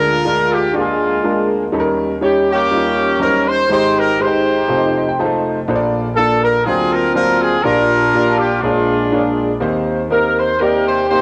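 A swung 4/4 gospel groove carries this hopeful, soulful excerpt, where a roomy horn section with light vibrato sings the melody over an intimate concert grand piano with deep bass and audible action noise, whose fill from 4.7 to 5.7 seconds leads into the repeat of the opening phrase, all captured as a home cassette recording with light reverb and studio ambience.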